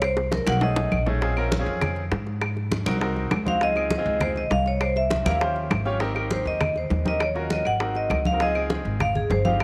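A moderate plate reverb lends a roomy sheen to this sunny, danceable excerpt of Afro-Cuban jazz at 200 BPM in a straight 4/4, which opens with a drum fill and settles into Ab major at 6.0 s. Warm, hard-handed congas, tight high-tuned bongos and woody claves in the background drive the groove beneath an up-front pizzicato upright bass with steel strings, while a clear, intimate baby grand piano with audible action noise enters at 0.5 s. The bright, ringing vibraphone sits up front with a slow motor vibrato, sounding briefly at the start, returning at 3.5 s and taking a solo from 6.0 s.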